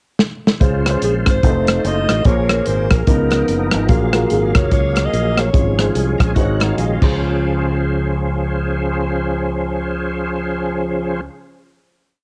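This short, complete piece has the soft haze of a home cassette recording in a small room with light reverb, giving its hopeful, reverent uptempo gospel a close, homespun feel with a swung eighth-note lilt. A natural country drum kit opens with a quick fill before driving a two-beat praise groove up front, its punchy kick, medium-tuned snare, rim clicks, hi-hat and crash sounding airy and polished until they stop at 7.1 seconds. Underneath, a growly fingered electric bass walks and runs with slides, while a woody upright piano sits in the background pushing close-voiced chords with grace notes and short fills. A reedy tonewheel organ holds bright drop-2 chords up front through a slow rotary speaker and chorus vibrato, key click audible, and takes a fill from 5.9 seconds. Between 1.0 and 5.8 seconds a breathy alto saxophone plays whispered, intimate call phrases in a jazz style, with scooped notes, a soft attack and light vibrato. 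The harmony moves through rich sevenths, ninths and a thirteenth, passing through a suspended dominant and settling back on Dbmaj7 before a final hit.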